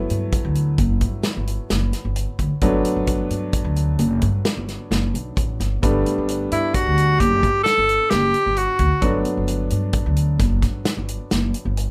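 A clear, slightly boxy baby grand piano and a woody, thumpy pizzicato upright bass with gut strings open this intricate, driving progressive instrumental excerpt in G major at 131 BPM in 7/4, joined at once by a punchy, natural acoustic drum kit with a medium-tuned snare, before a bright, breathy jazz-style tenor saxophone enters up front with light vibrato for a short solo from 6.5 to 9.3 seconds over a Gmaj7 chord, all set in light reverb.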